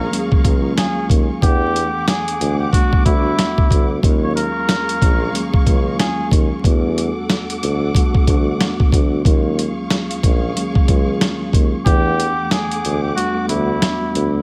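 Tough and moody, this boom-bap hip-hop excerpt rides a swung 92 BPM groove in 4/4, drifting between Ebm11 and Em11 chords. A gritty, compressed sampler-style drum kit sits up front with a thumpy kick, medium-tuned snare and hi-hat, its tape-warm sound carrying the beat until the kick drops out at 13.2 seconds. Beneath it, a tuba plays the bass line in a vintage jazz style with light vibrato, while a mellow tine electric piano, clean yet heard through built-in speakers and cassette tape, supplies the accompaniment throughout. A lush bowed string section holds sustained chords further back, expressive and smooth on top. The cup-muted trumpet carries a soft, veiled melody with scooped notes and vibrato through tape echo, playing until 6.3 seconds and returning at 11.9 seconds, all set in a small room with a haze of vinyl crackle.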